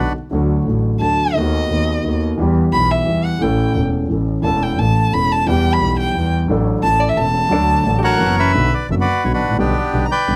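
A bowed violin carries an expressive solo with vibrato, soft attacks and portamento through most of this melancholic, tense rubato tango fragment in 3/4, over a dark, mellow grand piano whose audible action noise and deep bass sit up front beside a clear, bowed double bass with light vibrato. A clean, picked hollow-body electric guitar adds a brief compressed line in the background from 7.5 seconds, and at 8.0 seconds a reedy, full bandoneon takes over the melody. The close, dry recording keeps each instrument intimate and detailed.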